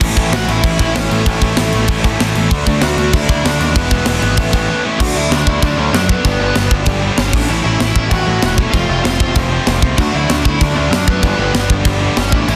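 A rowdy, upbeat punk rock excerpt in A major at 193 BPM opens with a polished, up-front drum kit, its bright cymbals, tight kick and medium-tuned snare ringing in a big, airy room, while a growling, punchy picked bass with overdrive sits forward and three bright, distorted picked guitars, one double-tracked, churn out riffs in the background. At 0.3 seconds a dark lead guitar through a small cranked amp joins with an overdriven, tape-echoed melody as the chords move from A through D and E, then shift at 5.0 seconds to a passage cycling through D, G, A and F. The sound is dry, dense and heavily limited, with a modern finish.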